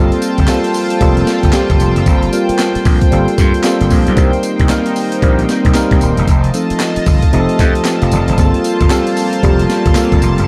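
Gritty slap bass drives this punchy, bouncy new jack swing excerpt, its overdriven, growly tone punching alongside a compressed, sampler-style breakbeat kit with a thumpy kick, medium-tuned snare, handclaps, hi-hat and tambourine, which enters at 0.1 seconds. The groove moves at 114 BPM in 4/4 with a 16th-note swing, giving the R&B feel a lively bounce. A clean tine electric piano plays the accompaniment through analog chorus, while a shimmering, retro pulse-width pad holds sustained chords with a slow attack and detuned, ring-modulated colour underneath. The harmony opens on Gm11, moves to Cm7 at 4.2 seconds and F7 at 6.3 seconds, then returns to Gm11 at 8.4 seconds. Light reverb and digital ambience frame a mix where the tape-warm drums and the electric piano sit up front, cut from a longer piece.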